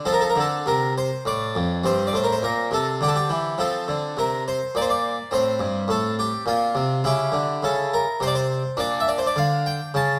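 In a rubato 3/4 at 103 BPM, this introspective, flowing baroque-style suite movement in F major is a short cut from a longer piece, with a solo Flemish-style harpsichord, plucked, full and brilliant from its three sets of strings, ranging from F2 to A5 and sitting up front through close, detailed microphones in a moderate recital-hall reverb.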